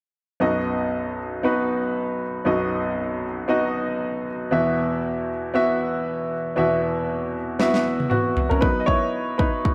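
A bright, woody upright piano with a slightly detuned edge opens this uplifting piano-driven pop excerpt in B major at 117 BPM, playing accompaniment over B and Esus2 chords with a light sixteenth-note swing. At 7.6 seconds an up-front, layered electronic pop drum kit enters with a fill across kick, fat snare and toms, overdriven and carrying gated reverb, before the piano takes a solo at 8.6 seconds. A lush hall ambience gives the whole a glossy, 1980s-style digital sheen.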